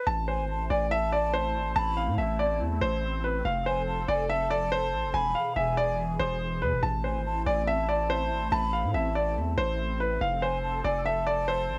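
An intimate concert grand piano carries the melody through a cassette-tape haze, its action noise audible and its low end deep, in this dark, cold half-time hip hop excerpt cut from a longer piece. A long, sine-toned 808-style bass sits up front beneath a hollow, detuned pad treated with ensemble chorus and phaser, while a breathy flute with a straight tone adds a close-miked second line through tape echo from 0.3 s. It is a home recording on cassette with light reverb, cycling through A minor, F and E chords.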